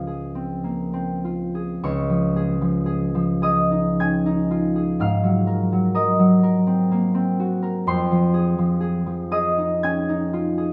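Bathed in a wet recital-hall reverb, this short classical passage for solo concert harp, cut from a longer piece, moves peacefully and gracefully in Db major at a rubato 47-63 BPM in 3/4, its up-front, thumb-plucked tone warm and ringing across a span from Db2 to Ab6 as the harmony passes from Dbmaj7 through Dbadd9 and Ab9 to Fm7 at 7.9 seconds.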